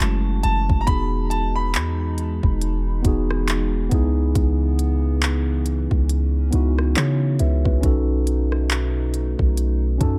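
Contemporary R&B at a relaxed 69 BPM in E major, this short excerpt feels smooth and dreamy, with a gentle swing on the sixteenths. A mellow tine electric piano carries the accompaniment throughout, moving through F#m7, Emaj7, C#m7 and B7, and it adds a brief fill from 9.6 seconds. A clear, natural grand piano states a high melody in the opening seconds, its notes trailing off into dub echo before it stops at 3.9 seconds. Underneath, a hollow, flute-like pad sits in the background with slow-attack, detuned chords softened by chorus. The deep, boomy 808-style bass and the electronic drum kit, with its soft kick, smooth hats, rim clicks and handclaps, sit up front. The mix is dry of reverb but echo-heavy, giving the track an intimate, floating quality.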